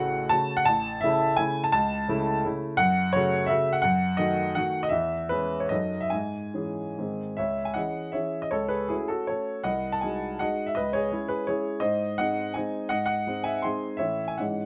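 Dotted rhythms drive this triple-time dance in a romantic classical style, pushed and pulled by rubato, with a wistful, nostalgic mood. The solo grand piano sits up front, clear and present with a long sustain, ranging from low bass to the upper register, and is captured by close, detailed microphones in a dry room. Near 7.4 seconds the music moves into a new section, turning through minor and seventh chords before the recording cuts away on an A major chord.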